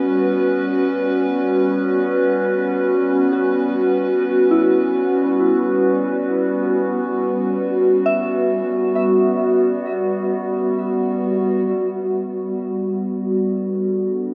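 This ambient fragment of a longer piece drifts in free time in G lydian, with a luminous, weightless mood. A warbling, tape-like pad sits up front from the first moment, holding sustained chords with a slow attack and long release. Its detuned blend of square, triangle and sawtooth waves gives it a nostalgic, lo-fi haze, thickened by chorus, phaser and its own reverb. At 3.3 seconds a soft FM bell enters in the background with gentle, pure arpeggios, its vintage tone shaded by chorus and tape echo. The bell drops out at 12.5 seconds, just after the harmony moves from Gmaj7 to Gmaj9 at 11.7 seconds, where a filter sweep begins on the pad. The whole piece floats in a huge, wet reverb with an 8.6-second tail.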